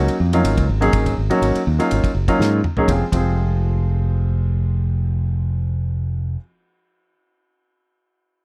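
A straight, driving 4/4 groove opens this short electric jazz fusion fragment, cut from a longer piece and carrying a nocturnal mood. A damped 1970s-style acoustic kit sets the pulse with a tight kick, fat snare, ride cymbal and toms, and it moves into a drum fill at 2.4 seconds before dropping out at 3.3 seconds. A bright, fingered electric bass sits up front with a direct tone, holding down the low end throughout. A clear concert grand piano, present and slightly worn with deep bass and short sustain, plays the accompaniment, moving from an Ab9sus4 chord to F minor as the second section begins. Once the drums fall away, only piano and bass carry on, heard in a dry, close 1970s-style studio sound with a touch of reverb.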